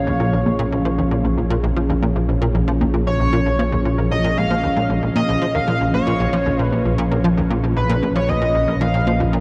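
A huge, wet reverb with a 7.7-second tail surrounds this dark, warm-toned stretch of ambient, sequencer-driven space music, cut from a longer piece and resting on a single Bbm7 chord in a straight 4/4. The mood is hypnotic and expansive, driven by a tight, punchy sequencer bass riff of nasal sawtooth and square waves with a fast filter pluck, treated with analog chorus and delay. Beneath it, a mellow analog drone of pulse-width-modulated sawtooth holds a low Bb1 with a slow attack and long release. A sweeping resonant pad of detuned sawtooth and sine layers with a sub octave sustains evolving, full-bodied chords opened by a filter swell. In the background, a warbly, dusty pluck with a lo-fi, vintage character and a noise layer spins arpeggios through chorus and delay. Up front, a shimmering, retro pulse-width lead carries the melody with bright vibrato, chorus and delay, stopping at 9.2 seconds while the other parts continue a moment longer, to 9.3 and 9.4 seconds.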